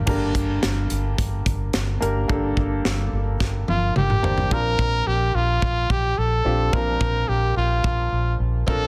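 Piano-driven pop with a dramatic, earnest mood, cut from a longer piece, opens on a clear concert grand piano over a dark, round, foam-muted electric bass and a punchy, up-front studio drum kit with bright cymbals. A drum fill begins at 3.4 seconds, and a brilliant, present trumpet takes the solo melody from 3.7 seconds as the fill leads into a new section at 4.5 seconds, where the harmony moves from G minor to Bbadd9. The sound carries light reverb and a dense, heavily limited modern master.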